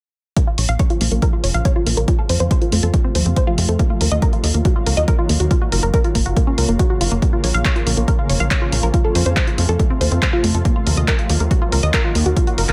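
Soaring and emotional, this uplifting trance excerpt drives forward in a straight 4/4 from start to finish. A lush, detuned unison pluck plays arpeggios with a filter-pluck snap and a moving notch, its sound pumped by sidechain and trailed by tape echo. Underneath, a tight, dark sequencer bass built from sawtooth, square and triangle tones sits up front with tube saturation and the same sidechain pumping, entering at 0.6 seconds. An analog, punchy electronic kick, re-recorded in a large room, stands forward in the mix alongside a layered big-room dance kit of handclaps and hi-hat. The chords move from Bbm through F and Ebmadd9 to Gbmaj7 before circling back, and the dry, close sound keeps the parts crisp and immediate.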